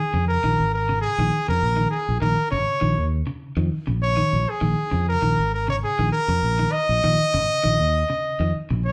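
Afrobeat with an intense, hypnotic mood, cut from a longer piece and resting on a single Bbm7 chord in straight 4/4. A bright, close-miked trumpet carries the melody up front, while a slightly broken-up electric guitar picks arpeggios soaked in spring reverb and a round, punchy fingered bass enters at 0.1 seconds. The band plays live in one room, with a wet studio reverb binding the sound together.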